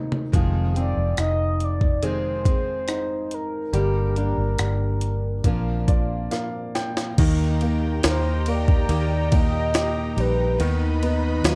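A dark, lightly reverberant production frames this hopeful, tender pop ballad excerpt in Eb major at 70 BPM, built on a polished baby grand piano, a full-bodied fingerpicked steel-string acoustic guitar playing arpeggios through delay, and an up-front, round, foam-muted electric bass. A gritty, pitched-up, sampler-style jungle drum kit with a thumpy kick sits forward in the mix, while a soft-attack, horn-like sawtooth synth lead carries the melody with chorus and phaser, and the piano adds a fill from 5.4 seconds. Lush, intimate bowed strings enter at 7.2 seconds with sustained chords, and a French horn section with light vibrato adds a second line in the background from 11.0 seconds.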